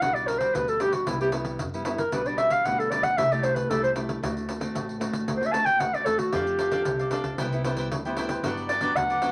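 A straight 4/4 samba-and-choro groove moves along at 114 BPM in G major, carrying a festive, joyful mood through this short 9.3-second cut from a longer piece. A mellow clarinet takes the solo throughout, up front in a classical style with a soft attack and a smooth top. Beneath it, a small, fingerpicked nylon-string guitar fills in the harmony while a woody pizzicato upright bass with steel strings holds the low end, and a jingly pandeiro, close and dry, is played with soft hands. At 6.3 seconds a crisp, picked cavaquinho joins the accompaniment. The chords move through Gmaj7/B, Cmaj7, C6 and D7 before turning to F6 and Cmaj7 and settling on Gmaj7, all set in a club room's reverb with a layer of vinyl crackle.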